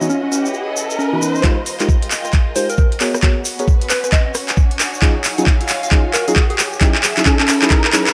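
Set in light reverb, this moody, soulful two-step UK garage clip at 134 BPM swings its sixteenths in F phrygian, opening on full-bodied, nasal chord stabs with chorus and tape echo, a grainy tube shaker, a background riser, and a dark, sul tasto string section that pumps under sidechain. A round, warbling FM synth lead with chorus and vibrato carries the melody over minor eleventh chords moving from Dbm11 through Fm11, Abm11 and Ebm11. At 1.4 s an up-front, overdriven electronic kick with a knocking punch enters together with a garage kit of handclaps, metallic hi-hats and rim clicks, driving a build-up and drum fill.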